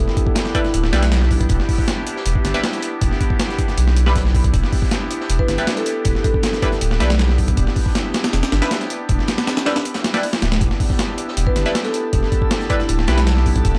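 A dry, gritty small-room sound frames this atmospheric, raw drum and bass excerpt at 158 BPM in E minor, sitting on a single Em7 chord. An overdriven, compressed sampler-style breakbeat kit with a thumpy kick sits up front beside a deep, thick saturated sub bass, while a very quiet, dark crunchy second kit and a nasal, band-passed sawtooth chord stab treated with chorus, phaser and dub echo fill out the groove. A marimba with medium mallets, roughened by 12-bit sampler grit and dub echo, drifts in and out in the background; the kick drops out briefly at 9.9 seconds under a faint electronic swell, and a glassy, drifting harmonics texture with chorus and reverb enters at 11.2 seconds.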